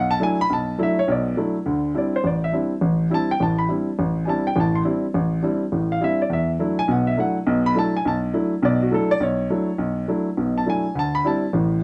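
Swung eighths drive this jazz passage at a brisk 206 BPM in 4/4, giving it an intense, searching feel as a solo baby grand piano with a warm, natural, up-front tone ranges from A1 to C6 over the full 11.8 seconds. The harmony moves between E9sus4 and D9sus4, shifting at 1.7 seconds, again at 6.3 and once more at 11.0, and a moderate large-studio reverb surrounds the instrument. This short stretch is cut from a longer piece, with the piano tuned slightly low to A4 = 438 Hz.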